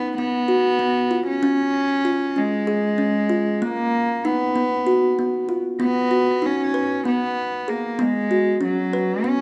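The bowed cello sits up front, a single player carrying the melody in a warm, pure sul tasto tone with a soft attack and a floating quality, moving between F#3 and C#4. Alongside it, a kalimba plays thumb-plucked arpeggios from A#3 to B4, its short notes woody and dark. This hopeful, shimmering piece of contemporary chamber music runs in 7/8 at 192 BPM counted in eighths, with a straight feel in B lydian. The harmony moves from B5 through C# and Bmaj7, and a new section begins at 5.8 seconds, passing from B to C#7sus4. A moderate recital hall reverb gives both instruments a sense of space in this passage cut from a longer work.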